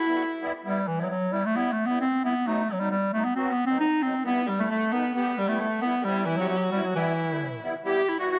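Festive yet bittersweet, this brief klezmer excerpt moves at 133 BPM in a straight 2/4, centered on E harmonic minor with chords shifting among Em, B and C. A clear, classical-style clarinet carries the solo melody up front, while a warm, intimate violin, bowed sul tasto with light vibrato and an airy, soft attack, plays a second line that sounds briefly at the start and returns at 4.2 seconds. Beneath them, a reedy musette accordion with its shimmering tuning supplies the accompaniment, all set in a moderate echo-chamber reverb.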